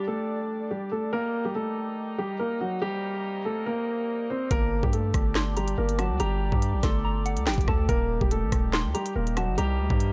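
A mellow, long-sustaining baby grand piano carries a low-pass-filtered melody over distant, roomy woodwind chords with light vibrato, while a very quiet downlifter sweeps in at the start, setting a cold, dark drill mood in G harmonic minor at 142 BPM with a half-time feel. At 4.5 seconds, a heavy, aggressive 808-style bass with distortion arrives alongside an up-front electronic drum kit of knocking kick, sharp snare, crisp hi-hats, handclaps and rim clicks. At 5.4 seconds, a soft, pure FM synth bell adds a high, warbling second line with chorus and delay, all in a dry, close-sounding mix cut from a longer piece.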